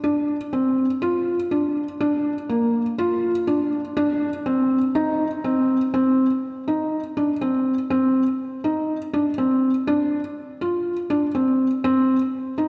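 A felt-muted upright piano plays alone throughout this short electronica fragment, its thick felt giving each note a soft, dark, mellow tone, with the mechanical action audible up close. The piano sits up front, keeping to a narrow middle register from Bb3 to F4. The pulse is a straight 4/4 at 122 BPM. A build-up runs through the first 5.9 seconds before a drop carries the piece to its cut-off at 12.7 seconds. A wet concert hall reverb with a 2.2-second decay surrounds the close, natural piano sound, and the top end tops out at 7.9 kHz. The mood is intimate and moving, like a private moment overheard from within a larger work.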